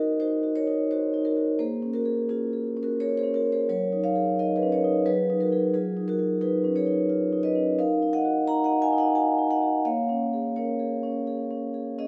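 A solo vibraphone, struck with soft mallets and played with the motor off, rings out mellow and airy from up front in this reflective, flowing excerpt of a contemporary classical piece, moving freely in rubato 3/4 through chords such as Ebm6, Gb69 and Ebmadd9, its close, detailed sound set within a moderate concert hall reverb.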